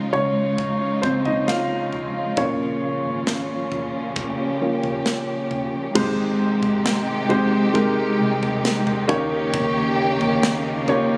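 Heard through a phone in a club-like room with plate reverb and compression, this emotional, hopeful pop ballad fragment at 67 BPM in Ab major sets an open, up-front baby grand piano soloing over the first 6 seconds, lush bowed strings with vibrato and portamento holding sustained chords, a dark, round, foam-muted vintage electric bass in the background, and a polished acoustic drum kit with bright cymbals, punchy kick, snare and toms, as the harmony moves from Dbadd9 and Bbm to Abmaj7 at 6.0 seconds and then Eb7.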